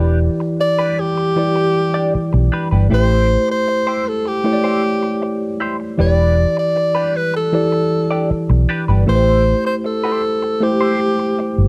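Light reverb frames this smooth, bittersweet 1970s-style soul passage in A minor at 78 BPM, where a round, punchy, foam-muted electric bass sits up front under a worn, slightly out-of-tune tine electric piano moving between Em7 and Am7, a clean, compressed direct-recorded guitar plays a wah riff, and a breathy alto saxophone enters at 0.6 seconds to carry the melody with pop-style vibrato.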